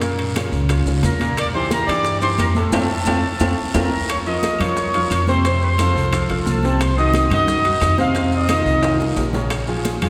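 A smooth-topped trumpet section with light vibrato carries the melody up front from 1.1 to 9.0 seconds in this passionate, driving salsa excerpt, backed by a bright, brilliant baby grand piano with long sustain and a dark, thumpy pizzicato upright bass on gut strings. Behind them sit bright, damped, high-tuned congas, ringing metal-shell timbales, a raspy guiro, grainy, mellow maracas and tight, very quiet bongos, with woody, saturated claves joining at 0.4 seconds. A wet church reverb surrounds the band, and a drum fill and band accent arrive at 2.7 seconds as the chords move from Gbmaj7 toward Bbm.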